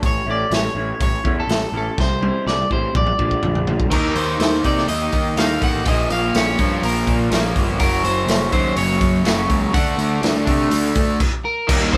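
Dark and cathartic, this quiet-loud alternative rock passage, cut from a longer piece, sounds like a band playing live together in one room under light reverb. A slightly broken-up electric guitar carries the melody with a warm, picked tone, while a second guitar through a small old amp plays lo-fi, murky arpeggios with phaser from the background. A growly fuzz bass, picked and overdriven with a bright bite, and a raw garage drum kit, saturated and gritty with a punchy kick, medium-tuned snare and rolled-off top and sitting up front, drive the song. After a drum fill starting at 2.0 seconds, a cranked, double-tracked stack guitar crashes in at 3.9 seconds with a brilliant overdriven riff as the music moves into its heavier section. The band hits a sudden stop at 11.2 seconds.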